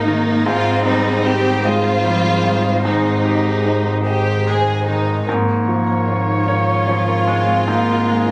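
In a rubato 6/8, this hopeful, tender neoclassical passage, cut from a longer piece, sets an up-front chamber violin section singing the melody with soft-attacked, sul tasto vibrato, while a dark, woody solo cello carries a second line and a lone viola adds hushed accompaniment in the background. A bright, polished concert grand piano with deep bass fills out the harmony over a pure, floating bowed double bass on a single low note, a very quiet reedy, breathing harmonium holds sustained chords, and from 0.1 seconds a harp-like synth pluck rings out soft arpeggios through chorus and tape echo. The chords move from Abmaj7 to Bbm7/Ab and Ebsus4/Ab, and the sound is that of a phone recording in the room, bathed in club reverb.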